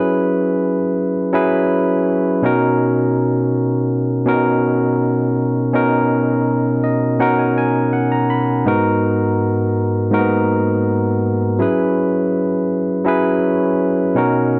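A straight, unhurried 4/4 pulse carries this short soul passage, cut from a longer piece and lasting about 14.6 seconds. A tine electric piano plays entirely alone, its barky, clean tone pushed through a combo amp and sitting up front in the mix. The harmony moves from F#9sus4 to Bmaj7, then settles on G#m9 before returning to F#9sus4, giving the passage a romantic, warm glow. Between 6.5 and 8.7 seconds the piano slips in a brief fill. A light touch of reverb softens the edges of an otherwise dry, close recording with a 1970s studio character.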